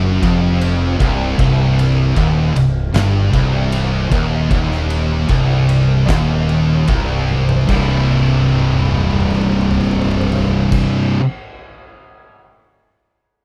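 A bright, scooped, double-tracked high-gain guitar riffs through this brooding, sludgy stoner and doom metal excerpt in C minor at 76 BPM, joined by two thick fuzz guitars in the background, one dark and one warm, along with a growling, overdriven fingered bass and an oversized low-tuned drum kit with a fat snare, punchy kick and a gritty, pumping stone-room sound, all fairly dry, as the tempo slows from 1.4 to 7.7 seconds and a drum fill carries the riff from C minor to a C chord at 7.7 seconds.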